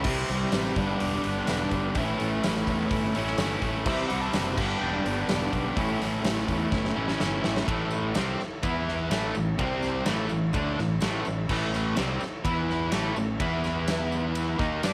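A sunny, driving classic rock passage opens with an up-front distorted electric guitar riff, a crunchier overdriven guitar set further back, a growly fuzz bass and a huge arena drum kit with a punchy kick and bright cymbals. A very quiet picked acoustic guitar plays until 7.7 seconds, a thick tonewheel organ holds chords through a slow rotary speaker, a jingly tambourine adds soft percussion, and a slide guitar contributes a brief high line from 3.9 seconds. A drum fill leads into the second section at 7.7 seconds, all within a small room ambience and light reverb.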